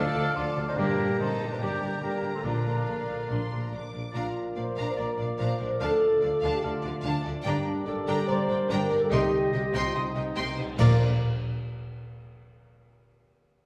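Up-front timpani struck with hard mallets punctuate this heroic adventure film cue, landing at 2.5 seconds and again at 10.8 seconds as the full orchestra hits an accent on Bb, while a mellow French horn section and trombones hold sustained chords beneath a lush, expressive violin melody in Bb major at 144 BPM. Bright background violins, a clear oboe, a mellow clarinet and a hollow flute weave second lines over a warm viola accompaniment, ringing harp arpeggios, vintage-toned trumpet stabs, and a bass of cellos, double basses and a very quiet tuba that drops out after 4.0 seconds. From 7.5 seconds a cymbal swell, bright clashing cymbals and concert bass drum join in, all set in a wet recital-hall reverb in this soaring excerpt from a longer piece.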